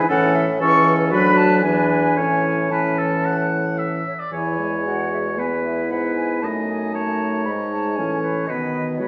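A wind quintet opens together in a lively, cheerful classical-period movement at a quick 115 BPM with a rubato feel, the pure, vibrato-tinged flute carrying the melody over the clear oboe's up-front second line, a soft-attacked, distant clarinet and a smooth-topped horn filling the accompaniment, and a present bassoon with light vibrato on the bass, moving from A major to E major at 4.3 seconds inside the wet bloom of a recital hall in this excerpt from a longer piece.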